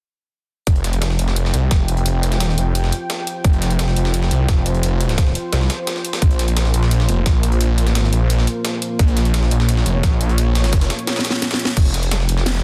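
A snarling, distorted sawtooth bass drives this tense, dark technical drum and bass excerpt at 173 BPM, growling up front in a low register with overdrive and sidechain pumping. It arrives at 0.7 seconds alongside a tight, layered electronic kick, a drum and bass kit with a cracking snare, bright hats and crash cymbal, and a gritty, compressed breakbeat sampler-style kit whose high-passed hats and medium-tuned snare carry a small-room character. From 1.5 seconds a deep, moody analog pad fades in with a slow attack, holding sustained, chorused chords that evolve beneath the beat with a touch of vintage 12-bit sampler grit. The harmony sits on F5, shifts to Bbm at 6.2 seconds and returns to F5, while a drum fill from 11.1 to 11.8 seconds marks the close of the passage. The sound is dry and dense, with a heavily limited modern master that keeps the overdriven drums and bass pressing forward.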